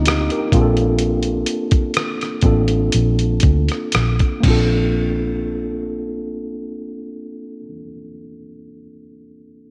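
A tine electric piano and a muted fingered electric bass open this smooth, sensual neo-soul and R&B excerpt in Bb major, and a dusty sampler-style drum kit joins a moment later, all three sitting up front. The tempo falls between 57 and 65 BPM in 4/4 with a gentle swing on the sixteenths, and the pace slows through the first 5.0 seconds. The drums sound compressed and gritty, with a thumpy kick, hi-hat, rim click and crash cymbal, and they drop out at 4.7 seconds. The bass is dark, round and punchy with an amped, foam-muted tone, holding the low register until it stops at 7.6 seconds. The worn, slightly out-of-tune electric piano is lightly overdriven and heard through its built-in speakers, moving from Cm11 to Bbmaj9 and continuing on its own to the close. A light reverb surrounds the whole.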